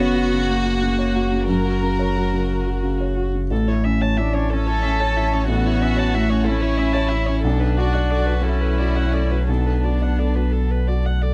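Dry and close, with little reverb, this short cut from a longer neoclassical piece for piano and strings feels reflective and melancholic. It moves in 6/8 with uneven, rubato beats. A chamber violin section carries the melody with light vibrato, soft attacks and a hushed sul tasto tone. A single cello plays a dark, woody second line beneath it, sliding between notes with portamento and a smooth top. A felt-muted upright piano gives soft, mellow accompaniment with short sustain, joined by an airy-bowed solo viola with an intimate, close tone. Beneath them a deep, punchy sine sub bass sits up front, its notes starting with a pitch-drop attack and then sustaining, while the harmony moves from F# at 0.0 s to A at 3.5 s and settles on Bm7 at 7.4 s.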